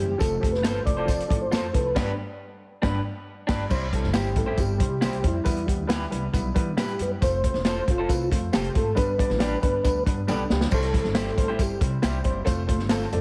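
Uptempo 1960s-style soul in C major at 137 BPM, uplifting and danceable, where a mellow, flute-like tonewheel organ with chorus vibrato and slow rotary speaker carries the melody and takes a solo from 3.7 seconds over an intimate, slightly detuned upright piano, woody pizzicato upright bass, a punchy, up-front vintage drum kit with dark cymbals, a jingly tambourine in the background and lo-fi, slightly broken-up electric guitar stabs with warbly pitch drift, all under light reverb and a heavily compressed radio sound, with a band accent from 2.0 to 3.7 seconds and a drum fill at 10.3 seconds in this cut from a longer piece.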